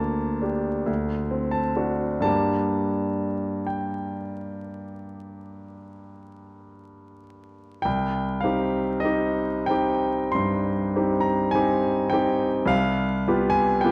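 Classical romantic nocturne for solo piano, wistful and melancholic, moving slowly at 41-53 BPM in 4/4 with a free, rubato feel. A bright grand piano carries the whole piece alone, from 0.0 to 13.9 seconds, ranging from C2 to C6. Its tone is brilliant, polished and intimate, sitting up front with long sustain and audible action noise. The music opens in G minor, passing from Gm/D through D7 back to Gm, then shifts to C minor at 7.9 seconds and reaches G7/C at 12.7 seconds. A wet scoring-stage reverb surrounds the instrument, and the overall production is dark and warm, with vinyl crackle beneath. This is cut from a longer piece, with the tuning set slightly high at A4 = 441 Hz.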